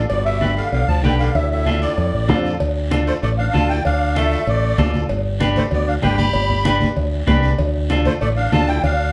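A shimmering, reedy musette accordion carries the melody in this danceable, passionate cumbia, its wet tuning set in a plate reverb. It moves along at 192 BPM in 4/4 with a straight feel, in D dorian, over a harmony that shifts between G and Dm. A breathy, gritty tenor saxophone plays a second line with vibrato and an edgy, pop-style presence. Beneath them, a dark, round fingered electric bass sits up front with a punchy, direct tone, while a clean electric guitar adds picked accompaniment from 0.4 seconds. Bright, low-tuned congas join the percussion, and a ringing cowbell and timbales and a raspy, band-limited guiro sit in the background. The whole band is heard from further back in a large studio with moderate reverb, and the clip is cut from a longer piece, ending at 9.1 seconds.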